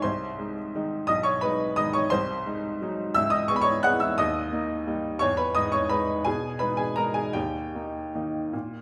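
A classical piano waltz in 3/4 with a wistful, nostalgic mood, moving with a flexible rubato feel through this brief excerpt, cut from a longer piece. A solo upright piano plays throughout the 8.8 seconds, ranging from B1 up to F#6, its tone clear, woody and natural, with short sustain and audible action noise that lends an intimate, up-front presence. The harmony drifts through G# minor shadings, passing from Ab/C and G#7/B# to C#m7, then reaching D# at 4.2 seconds before settling onto Emaj7 and returning to D# at 7.4 seconds. A wet recital hall reverb surrounds the instrument, giving the close, detailed piano a roomy halo that lingers after each chord.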